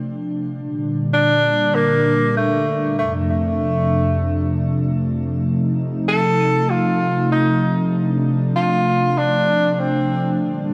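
A mellow tenor saxophone carries the melody in this nostalgic, nocturnal synthwave fragment, entering at 1.1 seconds with a jazz-style solo line marked by vibrato. Though placed up front, the horn has a distant, roomy character, its tone trailed by shimmer reverb and delay. Beneath it, a warm analog pad built from detuned sawtooth voices holds sustained chords from the very start, its slow attack and chorus giving it a smooth, softly blurred glow. The harmony moves in a straight 4/4 through Dm7, Gm, Dm7/F and F7 before settling back on Dm7. The whole passage sits in a wet, lush hall whose long tail deepens the late-night atmosphere.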